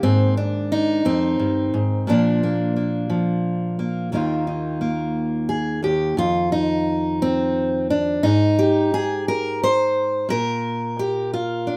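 A fingerpicked steel-string dreadnought guitar plays alone and up front, its fresh strings giving a warm, full-bodied tone in this short, hopeful folk piece in Eb major. It moves at an unhurried 58 BPM in a straight 6/8, spanning Eb2 to C5 as it passes through Ab and Bb before shifting at 4.1 s to an Ebsus2 and open-fifth voicings. A light reverb adds gentle space around the guitar, and the piece is cut from a longer performance.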